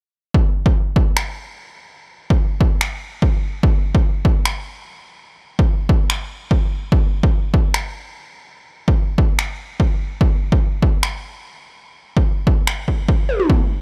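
Future bass in a half-time feel with a lush, emotional mood, this excerpt is carried entirely by drums. A punchy, overdriven electronic kick sits up front from the start. It is joined at 1.2 seconds by a layered big-room dance kit of finger snaps and toms, re-recorded in a large room, before a drum fill at 13.3 seconds closes the passage.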